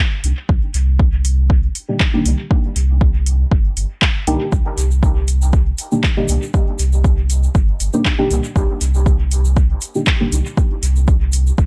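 A deep, mellow chord stab voicing Cm7 drifts through this hazy, nocturnal dub techno excerpt in C minor at 119 BPM, its detuned, dusky tone coloured by chorus, phaser, dub echo and sidechain pumping until it stops at 10.5 seconds. Beneath it, a clean, smooth sine sub bass pulses with sidechain pumping, and an overdriven electronic kick sits up front. A dry analog rhythm box adds handclaps and metallic hi-hats sent into dub echo, a grainy, bright tube shaker joins at 4.5 seconds, and the room carries little reverb.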